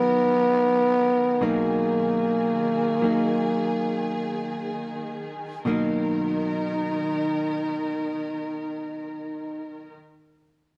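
Jazz ballad in free time and B major, tuned to A4 = 437 Hz, romantic and intimate in mood, slowing down over the first 5.7 seconds from an opening Bmaj7. A close-miked, growling trombone carries the solo melody up front, breathy and raspy with vibrato and scooped notes, while a clean, compressed hollow-body electric guitar picks a dark accompaniment beneath it. A lush bowed string section holds smooth, distant sustained chords further back, and light reverb and a warm production frame this short piece cut from a longer recording.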